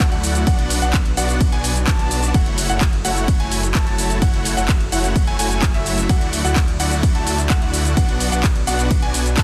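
Anthemic and euphoric, this festival progressive house excerpt at 128 BPM in F# minor rides a punchy, overdriven electronic kick up front and a layered house kit of bright hi-hat, handclaps, ride cymbal and shaker, while a huge, airy detuned supersaw riff with tape echo and a cassette-tape tint, a thick chorused saw bass, high brilliant piano arpeggios with their own tape echo, and a warbling vintage pad in the background each pump with the sidechain over Bm, F#m7 and Dadd9 in a dense, heavily limited master.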